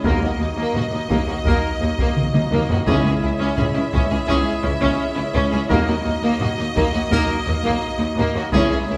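A dark, dramatic slice of epic orchestral film score, built on a distant, large-room taiko ensemble struck with hard sticks, whose fill at 2.2 seconds leads into a single round, soft-mallet timpani note at 2.9 seconds as the harmony shifts from D#m to C#m and back. A smooth, vibrato-rich symphonic violin section carries the melody over a lush background of bowed violas with portamento, a second violin line, and cellos and double basses holding the low end, while a hollow chamber organ with flute stops, chiff and tremulant sustains chords beside a very quiet, shadowy French horn section. A bright, roomy solo trumpet punctuates with stabs, and a wet scoring-stage reverb gives the ensemble its cinematic breadth.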